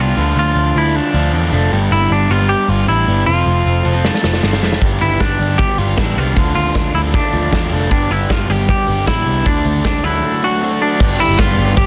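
A dense, heavily limited modern master with a small-room ambience frames this breezy, bright slice of jangly indie pop, cut from a longer piece. Up front, a clean, hollow-bodied semi-hollow guitar carries the picked melody with a slapback echo, while a crunchy overdriven guitar picks out accompaniment and a twangy, slightly broken-up guitar through a small old amp picks arpeggios through a phaser in the background. A dark, round, foam-muted electric bass anchors the chords as they move between Dm, G, F and D. The big acoustic rock kit arrives at 4.0 seconds with a fill, bringing a punchy kick, a medium-tuned snare, hi-hat and glittering crash cymbals. Near the close, a lush sawtooth string machine slips in very quietly at 11.0 seconds with slow-attack sustained chords, and a crisp, dry group handclap pops at 11.2 seconds.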